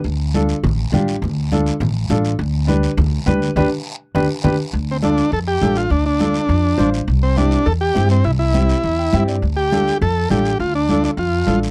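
A woody, pizzicato upright bass and a raspy guiro open this driving, danceable cumbia at 205 BPM in D dorian, with hard-handed, thick-skinned congas and a clear upright piano joining almost at once over a Dm to G/D progression. After a band accent, a buzzy vintage combo organ with heavy vibrato takes the melody up front at 4.9 seconds as the harmony moves through Dm and C, and the piano adds a short fill at 8.8 seconds. The sound is a dry, close 1970s-style studio recording with light reverb, cut from a longer piece.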